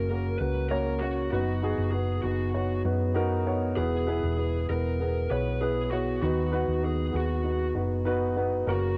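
A warm, anthemic mood carries this nine-second excerpt of piano-driven pop in B major, moving at 98 BPM in a straight 4/4. A dark upright piano sits up front with a mellow, woody tone and long sustain, carrying the accompaniment from B2 to C#5 with a cassette-tape grain. The lead guitar, picked through a small cranked amp, sings the melody between F#4 and B4 in an overdriven, lo-fi voice colored by cassette tape and tape echo. Underneath, a hollow-body short-scale fingered electric bass gives a round, punchy low end from E1 to F#2, also placed up front. The harmony moves from F# to B/F#, then to E at 3.8 seconds and B/D# at 6.2 seconds. Light reverb and small room ambience frame the home cassette recording.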